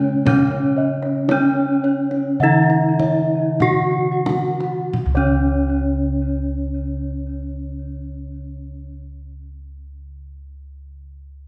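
Heard from further back on a wet, reverberant scoring stage with a soft top end, this short cut from a longer serene, shimmering Javanese gamelan piece moves in a straight 4/4 at 43-62 BPM, slowing over the first 5 seconds before a second section begins. An up-front bronze metallophone with a bright horn-mallet ring and paired-tuning beats carries the melody through tape echo, over a close, dry, full metallophone accompaniment and mellow, padded bossed gongs in the bass. An airy wooden-mallet metallophone and background bossed gongs spin high arpeggios, while a tight, vintage-toned kendang drums from 0.3 to 5.6 seconds.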